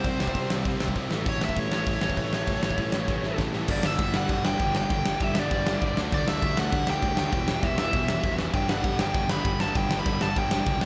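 Rowdy and energetic, this short punk rock cut from a longer piece charges along at 198 BPM in a straight 4/4, with a nasal lead guitar through a parked wah, overdrive and tape echo carrying the melody over a sludgy distorted guitar and a tight, bright distorted guitar that share the riff with slapback echo. A round, punchy fuzz picked electric bass sits in the background beneath a big acoustic rock drum kit that stays up front with a punchy kick, medium-tuned snare, hi-hat and crash, its dark, smooth tone marking a fill from 3.1 to 3.7 seconds before the chords move through G5, D, Em and G. A lush hall reverb and a small room together give the whole mix a big arena sound.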